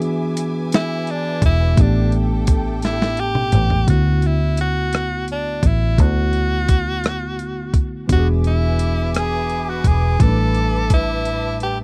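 Tender and sensual, this slow six-eight R&B passage, cut from a longer piece, sits on a dry, close 1970s-style studio sound. A dusty, sampler-style soul drum kit with a gritty, compressed character, a thumpy kick and a medium-tuned snare anchors the groove with hi-hat, rim click and toms, adding fills that lead out of the opening section and close the passage. Beneath it, a vintage foam-muted fingered electric bass stays dark and round through an amp, while a worn, slightly out-of-tune tine electric piano played through a combo amp supplies clean accompaniment over chords such as E7, A7sus4 and D69. An edgy, forceful tenor saxophone enters at 0.8 seconds to take a punchy, pop-style solo with vibrato and scooped notes. A lush, woody studio string section of bowed ensemble chords with vibrato holds sustained harmony through the opening section, drops out, and returns at 8.1 seconds for the final stretch.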